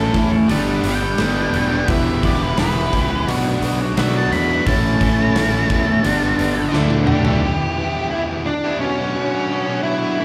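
Quiet-loud alternative rock with a dark, angsty mood, caught live through a club PA in a small room, opening with a dark octave-fuzz lead guitar soloing over a fuzz fingered bass, an up-front overdriven guitar riff alongside a bright, distorted fuzz guitar riff, and twangy, chorus-washed arpeggios behind them. A huge arena drum kit with a punchy kick and pumping room sound drives the band through chords such as Gadd9, Em and Bmadd9, ending its run with a fill at 6.7 seconds. At 7.4 seconds the drums, bass, arpeggios and overdriven guitar drop out, leaving the lead and fuzz guitars with their slapback echo.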